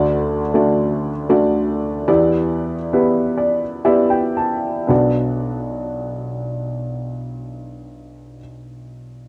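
A dark baby grand piano plays alone in this heartbroken, intimate folk fragment in B minor and 3/4, its mellow, worn tone sitting up front with audible action noise and a boxy character. The tempo moves between 54 and 84 BPM, slowing through the opening passage as the harmony shifts from D to Em7 before settling on Bm at 4.9 seconds. A light reverb and the soft grain of a home cassette recording give the brief passage a close, private feel.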